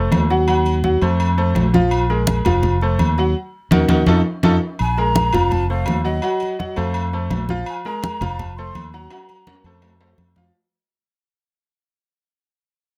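A passionate, driving salsa cut opens on a brilliant concert grand piano and a round, punchy fingered electric bass up front, with hard-handed, close and dry congas and ringing timbales and agogo bells set back in a large room joining almost at once. After a band accent and drum fill, a mellow, airy jazz flute with vibrato and a crisp chiff carries the melody from 4.8 seconds as the music fades out, moving through Ebm, F7 and Bb5 chords before a Gbmaj7#11 near the end. The sound is close and detailed with light reverb.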